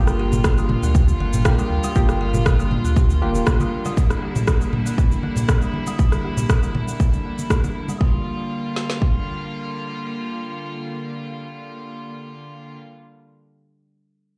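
An up-front deep house drum kit with a deep kick and woody snare drives this spiritual, earthy afro house excerpt from 0.4 s, layered with tape-warm electronic rim click and cabasa and close acoustic congas, while a round sine sub bass with tube saturation and mellow, chorused sawtooth key stabs with delay drop out by 3.4 s and 3.9 s, a ringing, hollow kalimba plays filtered, delayed arpeggios in the background, and a rich, bowed chamber string section with light vibrato holds sustained chords until 12.8 s, the strings, kalimba, keys and bass all pumping with sidechain compression inside a large studio reverb.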